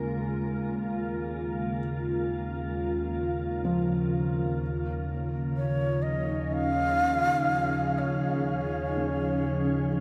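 Spacious and reflective, this ambient excerpt drifts at 62 BPM in a straight 4/4, opening on a Db6/Eb chord. A glassy FM pad sits up front with sustained chords, its slow attack and long release thickened by ensemble chorus and its own built-in reverb along with a shimmer reverb. Behind it, a soft, felt-muted upright piano plays mellow, intimate arpeggios with short sustain and audible action noise, washed in shimmer reverb and a diffuse ambient delay. A second section begins at 4.6 s, and at 5.6 s a breathy bamboo shakuhachi enters up front with an expressive, tongued melody, its vibrato and rolled-off highs carried by the same shimmer and delay. The whole piece floats in a huge, wet ambient space with a reverb tail of 8.1 s.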